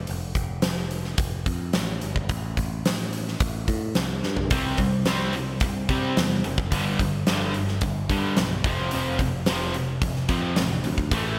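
Hard rock at 109 BPM with a driving, heavy mood, cut from a longer piece: a picked electric bass with a warm, direct tone opens alongside a huge arena drum kit, up front with a punchy kick and fat snare, and a drum fill at 4.2 seconds brings in two cranked stack guitars at 4.5 seconds. Both guitars play an overdriven, picked riff over a C5, G and F5 progression, one treated with harmonic tremolo and the other, sitting in the background, with analog chorus. The bright 1980s-style digital production adds light reverb and a small room ambience.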